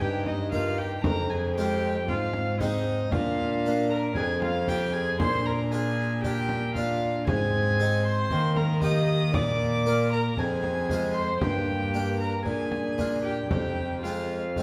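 A classical, renaissance-style consort dance in a straight 4/4 at 116 BPM, tuned to A4 = 439 Hz, courtly and solemn in mood, cut from a longer piece and set in a reverberant recital hall. A single violinist carries the melody with a dark, nasal gut-string tone from a distance, joined by a viola second line with light vibrato, while a close-miked, dry harpsichord with two sets of strings and a smooth-topped solo trombone supply the accompaniment. A rich, reedy bowed cello anchors the bass and a deep frame drum sits in the background, every part sounding from 0.0 to 14.6 seconds.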